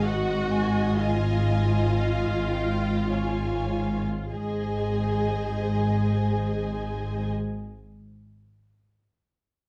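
A dark, warm studio sound sets this brief slow movement for string orchestra in a moderate stone-room reverb. The feel is tender and romantic, in Ab major and 3/4, moving with rubato at roughly 46-68 BPM and slowing through its opening 4.3 seconds. A woody, distant violin section carries the melody high up, while a second violin section adds a smooth, lush inner line. Violas sit close and focused in the middle, and the cellos bring an expressive bass with vibrato and portamento, doubled beneath by double basses holding a low Ab with light vibrato and an even, up-front tone. The harmony moves from a Db chord over Ab back to Ab major as the passage reaches its second section at 4.3 seconds, with every section bowed in this short passage cut from a longer piece.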